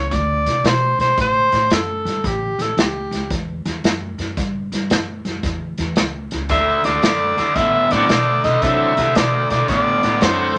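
Electric blues shuffle at 113 BPM with a rollicking, gritty swing, cut from a longer piece: a breathy tenor saxophone carries the melody up front with light vibrato and a soft, subtoned attack, resting between phrases before returning at 6.5 seconds. Woody pizzicato upright bass and a vintage drum kit with a punchy kick and a pumping small-room sound hold the groove over D7 and A7 changes, while a raw, overdriven garage guitar riff enters at 6.5 seconds and a shouting tonewheel organ with key click and slow rotary speaker joins at 7.9 seconds. Moderate studio reverb gives the mix a short, dark-topped ambience.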